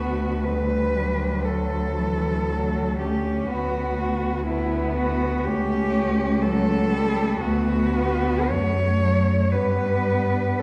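A slow, rubato 4/4 pulse of 50-62 BPM carries this lyrical classical passage for cello ensemble in D major, cut from a longer piece and warm in mood. Up front, a clear, focused cello sings the melody with vibrato between E4 and C#5 over a rich bowed bass line, while a smooth, even second line sits in the background and a more distant cello adds expressive accompaniment with portamento. The four bowed players are heard from further back in a wet scoring stage with a 1.9 s reverb, as the harmony moves from D through D69 and A7/C# back to D before reaching G at 9.5 seconds.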